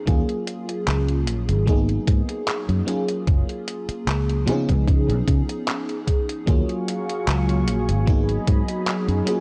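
Vaporwave at 75 BPM in Eb minor, nostalgic and hazy, this short cut opens on an up-front FM electric piano with a soft pad layer, its dreamy, decaying tone treated with phaser, subtle chorus and tape echo over a round, foam-muted fingered electric bass and a thumpy, overdriven electronic kick. A detuned 8-bit drum machine adds tape-warm handclaps and hi-hat with 12-bit sampler grit as the chords move through Ebm11, Abm7, Gbmaj7 and Db7, until a thick, detuned sawtooth unison pad with slow attack and chorus enters at 6.5 s. The dry, gritty hardware recording carries transformer saturation and cassette tape character.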